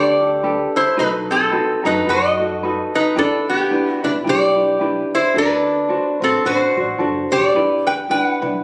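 Heard as if captured on a phone in a moderately reverberant recital hall, this relaxed, sunny Hawaiian excerpt swings gently in four as an up-front lap resonator guitar carries the melody with a metallic, nasal slide tone played with fingerpicks, while a light, thumb-plucked tenor ukulele and a woody pizzicato upright bass on steel strings support it through chords moving from Gadd9 and B7 to Em7 and D7.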